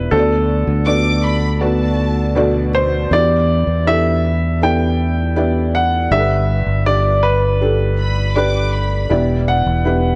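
A clear, polished grand piano carries the melody of this emotional, longing pop ballad excerpt over a soft, felt-muted upright piano with audible action noise and a round, punchy fingered electric bass, while a lush, bowed violin section adds a brief vibrato second line at 0.9 s and again at 8.0 s, the whole recording sitting in a small room and coloured by worn, warbly cassette tape pitch drift.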